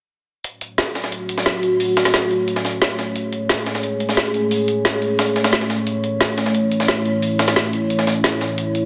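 Gritty, compressed breakbeat hats and a high-tuned snare open this tense, aggressive dark technical drum and bass excerpt at 0.4 seconds, moving at 177 BPM in F# minor, with a layered, woody electronic snare joining up front at 0.8 seconds. From 1.1 seconds a deep, moody sawtooth pad with a sub octave and slow attack holds sustained chords through chorus and phaser, shifting from F#m to A at 5.9 seconds. A lush hall reverb surrounds the parts, and the dense, heavily limited master keeps the drums and pad close and forceful.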